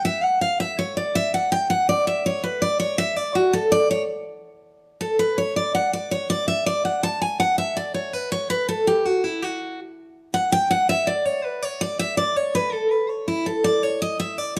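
Driving and rustic, this short bluegrass excerpt moves at a brisk 163 BPM in 3/4 with a straight feel, set in D major. A single picked steel-string acoustic guitar carries it alone from 0.0 to 14.6 seconds, its bright, full-bodied dreadnought tone sitting up front with fresh strings and audible finger squeak, ranging from E4 to A5. A moderate large-studio reverb gives the playing an open sense of space as the opening phrase returns at 4.3 seconds.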